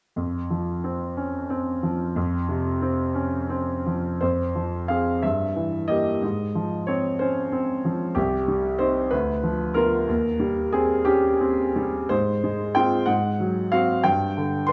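Bittersweet and brooding, this short cut from a longer romantic character piece for solo classical piano unfolds in F minor at a slow, rubato 61 beats per minute in 6/8. A clear concert grand carries everything alone from 0.2 to 14.7 seconds, ranging from C2 up to C6, its deep bass and open, up-front tone captured by close, detailed microphones. The opening passage rests on F5 before the music settles into its second section at 4.2 seconds, moving through Fm, Edim/G and Fm/Ab. It then turns toward Cm, Bdim/D and Cm/Eb, before returning to Fm/Ab, pressing through Ab7 and coming to rest on G5. A moderate recital hall reverb, lasting about 1.7 seconds, lends the intimate sound a gentle sense of space.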